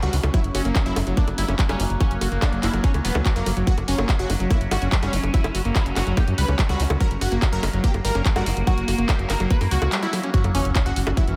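A dreamy, reverb-soaked mix in a lush hall opens this driving, hypnotic psychedelic trance excerpt at 144 BPM in F# major, cut from a longer piece. A tight, up-front electronic kick enters at 0.3 s beneath a layered kit of bongos, handclaps and bright hi-hats, while a round, deep analog bass with tube saturation anchors the low end. Above it, a squelchy, gritty acid bass riff sits in the background with delay and sidechain pumping, and a punchy, detuned supersaw stab carries the melody through a phaser and diffuse ambient delay. A wave-folded drone of moving overtones sustains chords behind them, coloured by chorus, phaser and a 12-bit sampler grit. After a short break, the drop lands at 10.3 s with an impact and a very quiet sub drop, and a faint, warbling, nostalgic tape-like pad fades in at 10.7 s.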